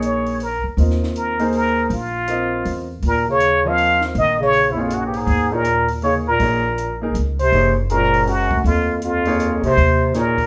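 A swinging 3/4 lilt drives this searching, hypnotic modal jazz fragment, cut from a longer piece and resting on a single minor ninth chord throughout. Up front, a plunger-muted trumpet carries the melody with a bright, wah-wah bite, light vibrato and scooped notes, close-miked and soloing in jazz style. A polished grand piano supplies clear, present accompaniment beneath it, while a pizzicato upright bass gives a woody, thumpy pulse. A compact cocktail drum kit sits far back in the mix, dry and natural, with a high-tuned snare, punchy kick and hi-hat. At 3.0 seconds a bass clarinet joins with a second line, soft in attack, with vibrato and its own scooped notes. The band plays live in one room, wrapped in moderate large-studio reverb.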